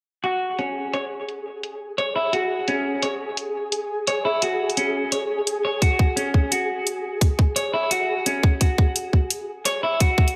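Half-time drum and bass with a tense, cinematic mood, this excerpt opens at 0.2 seconds with a clean, picked semi-hollow electric guitar playing arpeggios over an F#sus2 chord, its tone roughened by vintage sampler grit, a low-pass filter and tape echo, alongside bright, overdriven electronic hi-hats set up front in a small room. At 0.6 seconds a grainy, flickering texture with a slow attack and long release joins them, hovering quietly on a single sustained note and bathed in its own reverb. At 5.8 seconds a tight, overdriven electronic kick drum enters prominently, anchoring the swung groove within a moderate digital room ambience.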